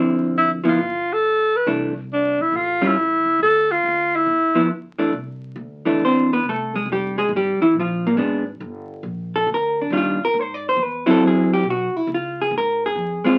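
Sophisticated and relaxed, this fragment of small-group swing and bop pairs an up-front, dark, clean hollow-body jazz guitar with a woody, plucked upright bass sitting low in the mix, while a warm alto saxophone with light vibrato carries the melody from 0.4 to 4.7 seconds, all heard through a moderate studio ambience and the crackle of a very old 78 rpm record.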